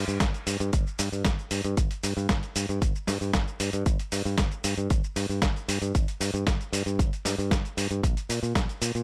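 A straight 4/4 groove at 115 BPM drives this short, sensual nu-disco cut in G minor, tuned slightly sharp to A4 = 445 Hz. A bright, direct fingered electric bass with tube saturation starts at 0.0 seconds and moves between G1 and Bb2, joined almost at once by a gritty, overdriven sampler-style soul kit of hi-hat, shaker and medium-tuned snare, plus a punchy, layered electronic kick that runs until 8.7 seconds. All three parts sit up front in a dry, close mix with little reverb, giving the groove an immediate, intimate feel.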